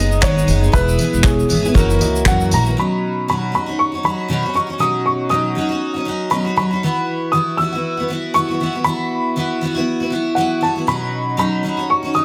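Easy-going and sunny, this lightly swung acoustic pop excerpt sets a mellow, slightly detuned upright piano melody over a reedy electric piano, a bright, double-tracked steel-string guitar, woody pizzicato upright bass, a grainy tube shaker and a cloth-damped, thuddy drum kit with handclaps, kick and tambourine, until the electric piano, bass, shaker and drums drop away by 2.8 seconds, leaving piano and guitar in moderate studio reverb on a dense, heavily limited master.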